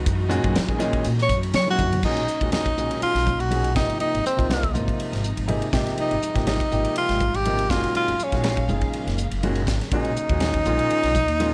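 A clear, close-miked tenor saxophone sits up front, entering at 1.2 seconds to carry the melody in a jazz style, its tone shaded with vibrato and scooped notes. This slick, funky stretch of electric jazz fusion, cut from a longer piece, moves at 122 BPM in 4/4 with a light swing on the sixteenths. Underneath, a woody, thumpy upright bass plays pizzicato on gut strings, while a polished, airy drum kit with a high-tuned snare and tight kick sets the groove, marking the change of section with a fill just before 2.0 seconds. Very quiet, damped congas with a bright, thin skin add soft hand percussion, and a concert grand piano with deep bass, an open sound and long sustain supplies accompaniment. A dark, veiled string section, bowed con sordino with a soft attack and lush smooth top, holds very quiet sustained chords as the harmony moves from F#13 through Bmaj9, Ab69 and Gbmaj9 before returning to Bmaj9. 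The whole sits in a small room with light reverb and a gently rolled-off top end.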